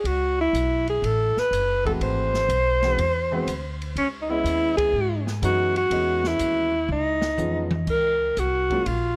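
A dry, gritty recording with light reverb and a touch of studio ambience frames this smoky, cool excerpt of small-group swing and bop in C# minor, moving at 123 BPM with a swing feel. The mellow alto saxophone sits up front carrying the melody with vibrato and a smooth, forceful tone, over pizzicato upright bass that sounds woody and dark and an airy drum kit with dark cymbals and a boomy kick. A natural-sounding grand piano comes in at 1.8 seconds, the band hits an accent at 4.7 seconds, and a drum fill at 6.9 seconds carries the tune into a new section.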